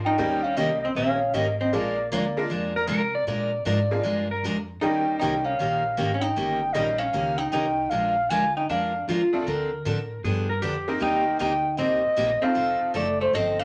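A mellow wooden baroque flute with vibrato and a crisp attack carries the melody up front from the start of this swinging, down-home western swing excerpt at 155 BPM in Bb mixolydian, over jangly, metallic tack piano and a thumpy, woody pizzicato upright bass. A clean hollow-body jazz guitar adds a second line while a bright, full-bodied dreadnought acoustic guitar is picked underneath, and a fingered lap steel slides in with volume swells at 2.8 seconds and again at 9.1 seconds. The tack piano drops out briefly before returning at 9.3 seconds, and a wet studio reverb with a short decay surrounds the ensemble.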